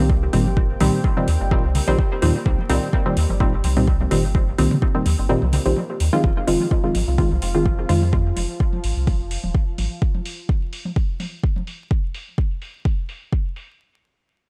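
Hypnotic, hazy dub techno at 127 BPM in F minor, cut from a longer piece, where a muted, up-front sawtooth chord stab with phaser, cassette-tape grit and dub echo rides over a round, soft sub bass, an overdriven deep kick that drops out from 5.3 to 6.2 s, metallic low-passed hi-hats, background toms re-recorded in a small room and a moody detuned pad that gives way at 6.2 s to a bubbling, resonant stepped-filter texture as the harmony moves from Cm7 to Fm, all with sidechain pumping on the pad, stab, bass, toms and texture and a dry, gritty hardware sound dusted with vinyl crackle.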